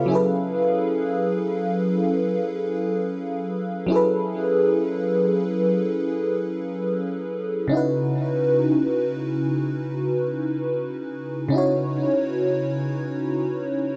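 In free time, this late-night, moody R&B excerpt features a solo FM electric piano with a soft pad layer, lush and dreamy with a fast attack, up front and coloured by chorus, phaser and delay, drifting from F#m11 to C#m11 at 7.7 seconds in a tuning of A4 = 437 Hz, all set in a moderate plate reverb with softened highs.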